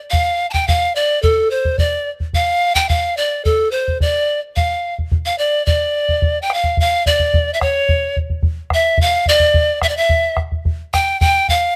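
Andean folk in a wistful, earthy mood at 108 BPM in 2/4 and D minor, this fragment features a breathy, bright bamboo pan flute carrying the melody up front with reedy chiff, tongued notes and vibrato in plate reverb, over a round, close and dry bombo, moving into a new section at 6.8 s before ending near 11.8 s.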